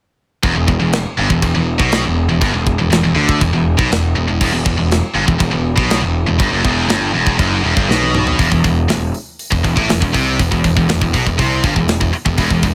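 Heavy metal at 120 BPM in E minor, this epic, relentless cut from a longer piece drives a bright, scooped, high-gain guitar riff, double-tracked and up front, over a growly, fuzz-laden picked bass and a tight acoustic kit with bright cymbals, a medium-tuned snare, china, crash, hi-hat and toms. The opening passage sits on an E minor chord until a drum fill at 7.9 s leads into a second section at 8.4 s where the chord drops away. Light reverb gives the studio-room sound a little space.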